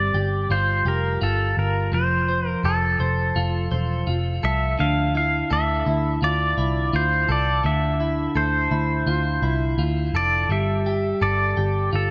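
Bathed in a moderate concert-hall reverb, this ethereal, hazy dream pop fragment sets a twangy pedal steel guitar melody, played with fingerpicks, slide and volume swells through digital delay, over bright, scooped clean electric guitar arpeggios treated with analog chorus and delay, while a dark, round, foam-muted picked bass carries the low end through chords moving from G5 to F, Dm9 and G7sus2.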